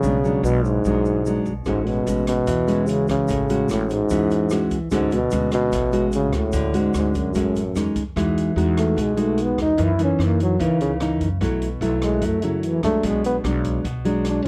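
Heard through worn, warbling cassette tape with light reverb, this excerpt from a longer piece is a romantic, sunny bossa nova at 148 BPM in E major, led up front by a dark, punchy trombone with light vibrato, played forcefully in a jazz style, beside a full-bodied, thumb-plucked nylon-string guitar. A woody, growly pizzicato upright bass and a grainy egg shaker, close and dry in the background, sit underneath, and an open jazz drum kit with a boomy kick, hi-hat and rim click enters at 1.7 seconds. At 8.2 seconds the shaker stops and the trombone takes a solo over lush extended chords such as Emaj9 and B7sus4.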